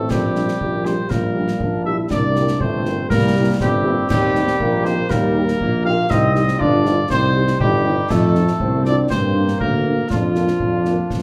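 Heard from further back through a wet, large studio reverb, this rousing, spirited military-style march for wind band in 2/4 sets a mellow, up-front cornet melody over a warm euphonium second line with light vibrato, smooth-topped sustained trombone chords in the background, a very quiet, dark French horn section, a tuba bass with vibrato, and concert snare drum, clash cymbals and concert bass drum in a small-room sound.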